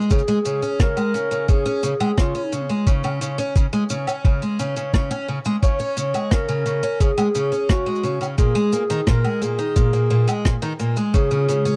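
A natural-sounding acoustic shaker, rim click and woodblock open this delicate folktronica excerpt in Db major at 87 BPM in a straight 4/4, joined a moment later by a muffled, compressed electronic kick that sits up front. A bright, shimmering, octave-doubled twelve-string acoustic guitar picks arpeggios with vintage 12-bit sampler grit and tape echo, while a dark, distant clarinet carries a classical-style solo melody over Db5, Absus2 and Db chords. At 11.4 s a warbling, nostalgic, lo-fi pad with chorus and its own reverb enters with sustained chords, all within a dry, close 1970s-style studio sound.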